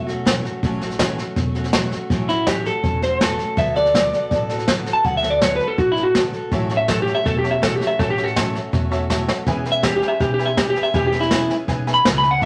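A rowdy, upbeat rockabilly excerpt opens on a full-bodied, picked steel-string acoustic guitar and a woody, dark pizzicato upright bass, with brushed drums and their boomy kick up front; a twangy, slightly broken-up electric guitar takes the lead melody from 2.3 seconds, a jangly, metallic tack piano joins in the background at 6.5 seconds, and the drums play a fill at 9.1 seconds, in a wet studio reverb.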